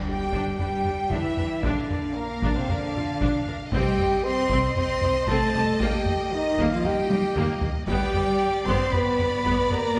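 Dark, distant French horns hold sustained chords through this heroic, adventurous cinematic orchestral cue, cut from a longer piece, moving at 115 BPM in a straight 4/4 through G5, Bb, Cm, Eb and G. A lush violin section carries the expressive, softly attacked melody, while a pure, straight-toned flute in the background and a close, even studio violin section share a second line, rich bowed cellos and woody double basses supply the bass, and focused violas fill in behind. Heavy-sticked, compressed taiko drums drive underneath with a fill at 7.1 seconds, all set in a wet concert hall reverb.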